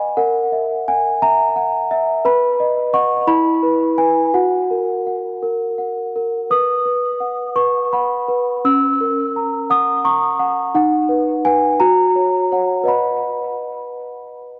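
Tender and dreamy, this classical lullaby fragment, cut from a longer piece, features a solo celesta, bell-like and delicate with a tape echo, drifting in a rubato 6/8 at about 57 BPM in B major, tuned slightly low to A4 = 437 Hz, as it moves between B and F# harmonies under light reverb and a dark production.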